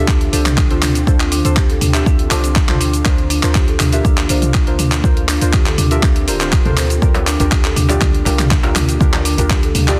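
A woody soft-mallet marimba arpeggio, a dark, warbling chord stab with delay and a boomy 808-style bass open this earthy afro house excerpt at 121 BPM, joined at once by an ethereal detuned pad in the background, a small-room deep house kit of cabasa, handclaps, hi-hat and toms, and an overdriven kick, while the pitched parts pump through Dm7, C9sus4 and Bb6 until djembe and quiet, bright congas enter at 7.1 and 7.2 seconds.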